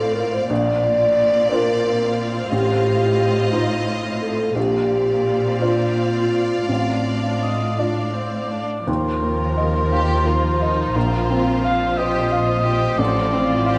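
A dark, distant French horn section holds soft-edged sustained chords over a felt-muted upright piano, whose mellow, intimate tone carries audible action noise, in this uplifting, hopeful cinematic passage in a rubato 6/8. Lush bowed strings fill out the texture: a symphonic violin section shapes a second line, while a rich viola section and focused cellos supply accompaniment and bass, and a roomy, classical-style cor anglais adds its own second line from 7.4 s. At 8.9 s a smooth violin melody enters in the background alongside an expressive double bass section with portamento, all set in light reverb with close, detailed miking.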